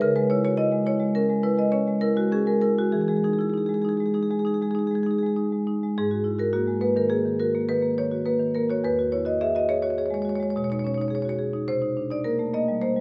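A solo marimba played with medium hard mallets sounds warm, vintage and band-limited up front in a wet recital hall, carrying a reflective, flowing contemporary classical excerpt in G# minor and 5/4 with a rubato feel around 96-107 BPM, its harmony moving from C#m and Emaj7 into a second section from 6.0 seconds that passes through G#sus2, E69 and B69 before settling on Cm9 at 11.7 seconds.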